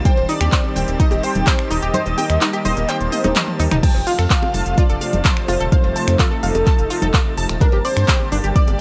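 A light reverb and digital ambience surround this short progressive house passage, cut from a longer piece, which moves at 127 BPM in a straight 4/4 with an uplifting, hopeful mood in F mixolydian. A deep, up-front electronic kick anchors the groove, joined by a layered deep house kit with smooth hats, finger snaps, handclaps, shaker, toms and crash, while ringing bongos, congas and cowbell sit in the background with a small-room, acoustic character. A round, dark analog bass and a lush supersaw pad pump under sidechain compression as the chords move from Cm/Eb to F at 3.8 seconds and on to Gm. A tight, nasal sequenced synth drives arpeggios through chorus and digital delay, and a thick, bold unison lead carries the melody with vibrato, analog chorus, delay and a touch of vintage 12-bit sampler grit. High above, a very quiet glassy texture of drifting overtones hovers throughout. The kick drops out from 1.9 seconds, and a drum fill carries the track back to its return at 3.8 seconds.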